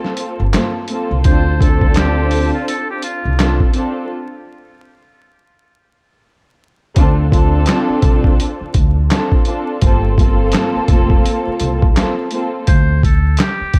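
Dark, bowed strings with a cassette-tape tint and a gritty, pitched-down sampler drum kit of thumpy kick, snare, hi-hat and handclaps open this tough, moody boom-bap hip-hop excerpt in D minor at 84 BPM with swung sixteenths, while a woody, growly pizzicato upright bass joins at 0.4 s and a buzzy, breathy trumpet with a metal mute and delay plays a brief jazz-style solo line from 1.2 s and returns near the end, all under a dark vinyl-crackle haze as the chords pass from Gm11 through Dm7, a chordless break, Dm7 again and Gm11 to a closing Csus2.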